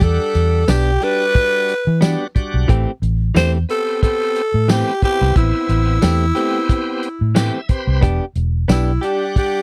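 Straight-eighth soul blues at 90 BPM, soulful and brooding, where a raspy, growling tenor saxophone carries the melody up front over a round, foam-muted fingered electric bass and a dark, small-room soul drum kit with fat snare, tight kick, hi-hat and tambourine, while a bright, shouting tonewheel organ through a slow rotary speaker and light overdrive accompanies and adds a fill at 7.0 seconds, a clean, compressed direct-recorded electric guitar plays stabs from 0.7 seconds, and the chords move from Em7 to Am7 and back in a dry, close 1970s-style studio sound cut from a longer piece.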